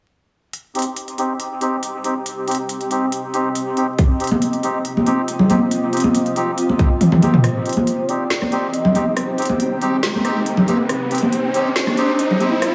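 A reedy, nasal melodica sits up front in this cavernous deep dubstep excerpt, playing stabs through a low-pass filter and dub echo over a half-time 139 BPM groove in C minor. A deep house drum kit with a woody snare, smooth hats, rim clicks and toms carries the beat from near the start, while a tight, layered electronic kick appears only briefly. Ringing, saturated congas played with hard hands join at 4.3 seconds, also trailing dub echo. Beneath them a cloudy, detuned granular pad holds sustained chords under filter sweeps, and a breathy, mellow low ney enters at 7.2 seconds with vibrato and tongued, expressive phrasing. After a drum fill, the second half becomes a build-up with an electronic riser and a very quiet flickering, grainy texture, all framed by moderate, lush hall reverb, vinyl crackle and small room ambience.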